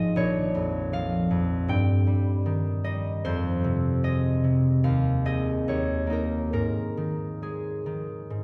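Graceful and serene, this short cut from a longer classical piece features a solo concert harp in Ab major, moving at a gentle 68-80 BPM in 4/4 with a flexible, rubato feel. The fingerpicked harp has a bright, ringing acoustic tone and sits up front, spanning from a deep Ab1 up to G5. A wet recital hall reverb surrounds it, and the listener seems placed further back in the room, giving the notes a spacious halo. The harmony drifts from Bbm through Eb/G and Fm to Ab/Eb at 4.8 seconds, then settles onto Eb5 and finally Ab5 at 6.5 seconds. Across its 8.4 seconds, the passage feels calm and poised, like a quiet moment lifted from a recital.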